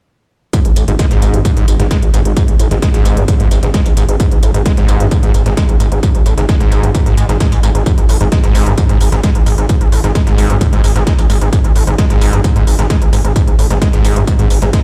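A straight 4/4 pulse at 131 BPM drives this intense, industrial peak-time techno excerpt, where a heavy, tape-tinged electronic kick sits up front beside smooth, layered electronic hi-hats, a dusty sampler-style soul kit of overdriven hi-hat, snare and tambourine pumps in the background, a gritty sawtooth synth bass with oscillator sync and ring modulation pulses under sidechain pumping, and a screaming, squelchy acid riff, distorted and chorused with tape echo and a resonant filter sweep, rides on top.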